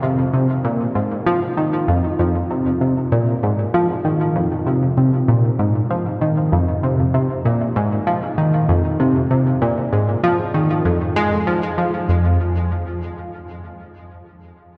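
A tight, driving sequenced synth plays alone from the very start, its detuned sawtooth and pulse-wave tone shaped by a fast-attack filter pluck and sustained notes in a low register, held up front with chorus and delay. This mysterious, hypnotic ambient fragment moves in a straight 4/4 feel inside a dreamy, cathedral-sized reverb that lingers for 5.4 seconds. The synth stops at 12.4 s, shortly before the fragment closes at 14.6 s.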